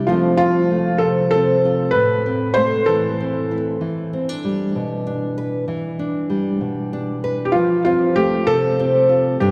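Acoustic folk in a gentle, hopeful 6/8 at 64 BPM, cut from a longer piece, with a fingerpicked nylon-string guitar playing bright, fresh-stringed classical accompaniment throughout, moving through F, Amadd9 and Em7 before returning to F. A felt-muted upright piano carries the melody up front, its intimate, mellow tone and audible action noise heard from 0.1 s to 3.5 s and again from 7.5 s. The duo sits in a church or concert hall, bathed in long, wet reverb.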